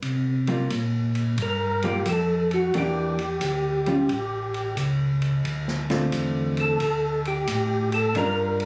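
A swung eighth-note groove at 89 BPM in 4/4 sets up this short, soulful soul jazz organ trio fragment in C mixolydian, cut from a longer piece. From the start, a mellow tonewheel organ carries the bass line, its round tone colored by chorus vibrato and a slow rotary speaker. Alongside it, a vintage acoustic drum kit sits mid-forward in the mix, with hi-hat, ride and a medium-tuned snare, and dark cymbals with a rolled-off top. At 0.5 s a clean, picked hollow-body electric guitar comes in up front with compressed accompaniment. At 1.4 s a percussive tonewheel organ takes the melody, its third-harmonic percussion, chorus vibrato and slow rotary speaker bathed in plate reverb. The harmony moves from C7sus4 through Em7b5 and A7 to Dm7, and a moderate studio ambience and phone-in-the-room capture give the whole a swinging feel.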